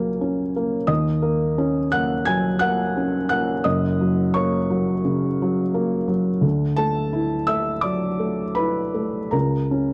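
Hopeful and intimate, this short neoclassical minimalist fragment rests on a solo felt-muted upright piano, soft, mellow and up front, spanning F#1 to G#6 with uneven beats and rubato as the harmony moves from F#/C# through D#m7 and F# to Dadd9 before settling on a rootless F#/C#, set in light reverb with a dark, warm production.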